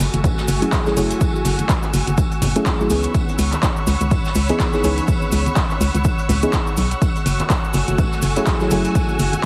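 Moody and smooth, this deep house excerpt rides a swung groove built on a punchy, overdriven electronic kick that sits up front with 12-bit sampler grit. A dark, hollow FM bass with an organ-like tone pumps against the kick, while a deep mellow chord stab with a detuned, warbling vintage character adds chorus and analog delay, entering at 0.6 seconds. Overhead, a rich, lush studio string section with vibrato sounds distant and pumps with the sidechain, and a silky string machine with slow attack and ensemble chorus floats higher up. The rhythm bed layers a gritty house kit of handclaps and metallic hats with a natural brushed jazz kit of hi-hat, snare and tambourine in the background. Ringing congas played with soft hands and a grainy, bright cabasa sit close and dry behind it all, and the whole mix carries a heavily compressed, radio-like sound in a small room.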